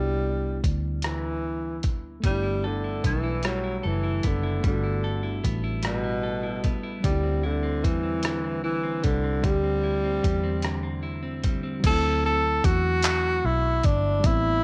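Slow six-eight R&B at 50 BPM with a sultry, late-night mood, cut from a longer piece: an up-front, breathy tenor saxophone carries a jazz-style solo melody with light vibrato, scooped notes and a smooth top over a reedy electric piano in the background, a dark, round, foam-muted electric bass with transformer saturation, and a gritty, compressed, sampler-style soul drum kit with thumpy kick, handclaps, hi-hat, rim click and crash that enters at 0.6 seconds. A clean, picked electric guitar adds a second line from 2.2 to 12.4 seconds, set in light reverb on a home cassette recording as the chords move from Cmaj7 through G69 and D9sus4 to D9.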